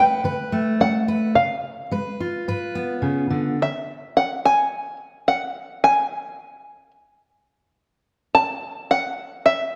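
Nostalgic and hopeful, this short folk excerpt moves at a steady 107 BPM in a straight four. An open-back banjo carries the melody throughout, its plunky, twangy voice sitting up front in a high register. A fingerpicked steel-string acoustic guitar with fresh strings and a full-bodied dreadnought tone accompanies it from the start, moving from Gadd9 to C#7 before dropping out at 3.6 s. From there the banjo plays alone, its percussive picking unsupported by chords, and the melody carries on into a new section at 8.1 s. A moderate reverb from a scoring stage gives the instruments an open, airy space, and the clip ends at 9.8 s, cut from a longer piece.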